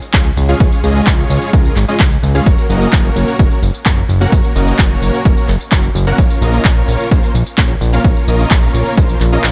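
A dry mix carries this euphoric, uplifting festival progressive house fragment, cut from a longer piece, where a punchy, overdriven electronic kick sits up front beneath an overdriven big-room kit of handclaps, crisp hi-hats and tambourine, while a huge, detuned supersaw riff pumps to the sidechain and trails dub echo over a fat, saturated analog bass that pumps along with it through chords of Db, Gb and Bbm.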